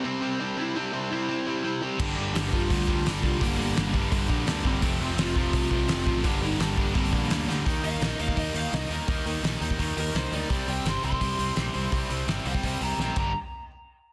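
This raw, urgent punk rock excerpt at 169 BPM opens with a cranked, overdriven lead guitar carrying the melody through tape echo over an up-front, hollow-body semi-hollow guitar riff. At 2.0 seconds a growly picked bass, a loose indie kit with a fat snare, punchy kick and dark cymbals in a pumping room, and two bright distorted riff guitars join, one in the background and one very quiet and double-tracked that drops out at 7.7 seconds. From there the lead guitar takes a solo over Eb and C chords, with drum fills at the turns, inside a dense, heavily limited master with light reverb.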